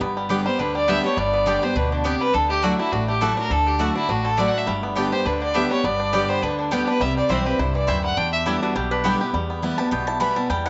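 A full-bodied, up-front picked acoustic guitar with audible finger squeak opens this driving, lonesome bluegrass excerpt at a swung 206 BPM, alongside twangy banjo arpeggios and a thumpy gut-string upright bass, with the mandolin's double-string stabs coming in almost at once. From 0.5 seconds a biting, earthy fiddle with light vibrato carries the melody over chords moving from G through Dadd9 to C and Em7, and a nasal, metallic lap resonator guitar adds a brief slide line at 8.5 seconds. At 9.3 seconds the woody mandolin takes a short solo over Em, the whole band sitting in wet spring reverb and studio ambience with a soft, rolled-off top.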